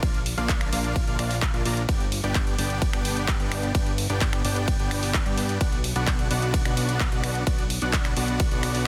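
A straight 4/4 pulse at 129 BPM drives this uplifting, euphoric festival progressive house excerpt in G major, where a punchy, overdriven electronic kick sits up front beneath an overdriven big-room kit of finger snaps, handclaps, hi-hat and ride cymbal, while a huge, detuned supersaw riff with vibrato, sidechain pumping and dub echo and a fat, nasal, saturated analog bass that also pumps move through Bb, G and Bm chords in a dense, heavily limited mix with light reverb.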